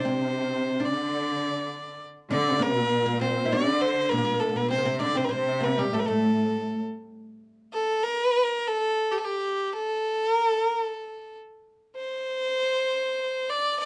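A clear, nasal violin carries the melody up front, its single bowed line airy and earthy with a light vibrato, running from the opening to 13.9 seconds in this hypnotic, soulful Arabic maqam ensemble piece cut from a longer work. Beneath it at first, a lush symphonic cello section bows a focused, smooth-topped second line in the low register, while a woody, fretless oud adds another second line with plectrum-plucked double strings. Both supporting parts stop at 6.8 seconds, leaving the violin alone through the second section. The tempo sits at a steady 100 BPM in a straight 4/4. A wet studio reverb surrounds the ensemble, and the whole recording has the worn, warbling character of old cassette tape, with a wavering pitch drift and a dull, muffled top end.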